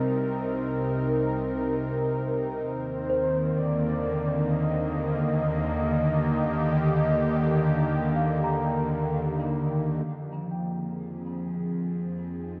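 At an unhurried 65 BPM in straight 4/4, this serene, spacious ambient passage rests on a detuned, warbling analog pad with chorus, sitting up front, and a bowed, earthy cello section holding the bass, moving from Cm7 to Ebmaj7 and then Fm7. A velvety sawtooth synth lead with vibrato, chorus and tape echo fades in to carry the melody until 9.1 s, while a delicate, bell-like celesta with tape echo enters at 3.1 s with soft arpeggios in the background. A vast cathedral reverb bathes the whole piece in a long, echoing wash, and the recording is cut from a longer work.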